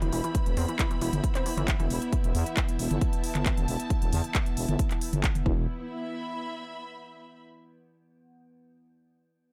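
Set in light reverb, this dark, driving peak-time techno excerpt at 135 BPM in 4/4 is led by an up-front, heavy electronic kick and a thick, growling FM bass, with a layered techno kit of handclaps, smooth hi-hats and toms. A round, nasal analog pluck riff with chorus, tube saturation, cassette tape colour and dub echo sits over a metallic, eerie inharmonic drone and a lush, woody bowed string section with vibrato. All three pump against the kick, as does the bass, while a barely audible downlifter passes early on. The pluck returns briefly near the end, and after 5.7 seconds the strings carry on alone until 7.4 seconds.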